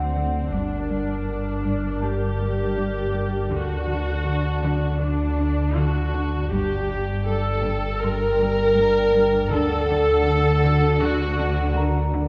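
Cinematic and mysterious, this tense 80 BPM excerpt in G harmonic minor shifts between D and G minor as an up-front, vibrato-rich chamber viola section carries the accompaniment over a warbling, detuned, lo-fi tape-like pad with chorus, very quiet bowed double basses and a lush symphonic cello section, a deep sine-and-triangle sub bass drone and a clear chamber cello riff in the background, while a ringing, thumb-plucked concert harp adds texture from 2.0 s, all heard from further back in a reverberant scoring stage.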